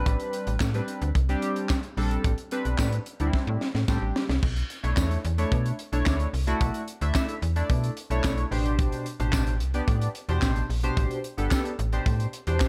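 A straight 4/4 groove at 110 BPM drives this slick, late-night slice of early-eighties boogie funk in B phrygian, with a tight, punchy drum kit up front carrying handclaps, hi-hat, crash cymbal and a high-tuned snare, and a drum fill from 3.3 to 4.4 seconds leading into a second section. A snappy, slap-like FM bass with a metallic attack sits up front alongside a glossy, chorused retro polysynth whose mellow pulse and sawtooth tones carry tremolo and a filter sweep through Am11 and Bm11 chords. A jingly tambourine joins at 0.6 seconds in the background, and the whole dry mix is cut from a longer piece.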